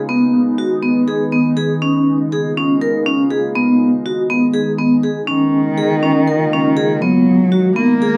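A bright, metallic vibraphone struck with hard mallets rings up front from 0.1 seconds, spinning arpeggios with a fast motor vibrato over a glassy, ethereal FM pad whose slow attack, long release, ensemble chorus and built-in reverb hold sustained chords underneath. This shimmering, playful piece of contemporary chamber music moves in 7/8 at 242 BPM in eighths, with a straight feel, as the harmony alternates between Cb6/Eb and Db13 before settling on Cb6. At 5.3 seconds a single dark, woody bowed cello with vibrato joins up front with a second line, and light reverb frames this short excerpt of a longer piece.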